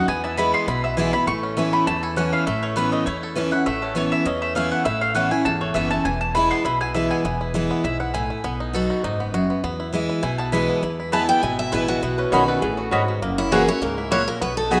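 A rough home-demo mix bathed in lush hall reverb gives this joyful, driving bluegrass clip a roomy, unpolished sound. A twangy, percussive banjo played with fingerpicks carries the melody from the start, while a bright, up-front picked dreadnought guitar supplies accompaniment and a woody, thumpy upright bass on gut strings holds down the low end. The round, double-strung mandolin punctuates with stabs and is featured as the soloist through the first 10.8 seconds. A second picked acoustic guitar, fresh-stringed and full-bodied, enters at 11.1 seconds with its own melody. A metallic, nasal lap resonator guitar played with a slide adds a brief second line at 12.2 seconds, as lightly swung eighths push the harmony from E through Aadd9, B and Badd9 to a closing F#7.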